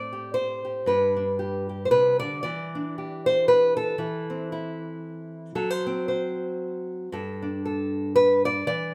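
Folk for solo nylon-string guitar, peaceful and hopeful, in a lilting swung 3/4 at 115 BPM, the bright, fresh-stringed, fingerpicked guitar sitting small and up front in a wet stone room with a 1.4-second reverb tail as it moves from Am7 and G into a longer passage through Em7, Am/E, F#(b5, no3) and Gsus2, the short excerpt ending at 8.9 seconds.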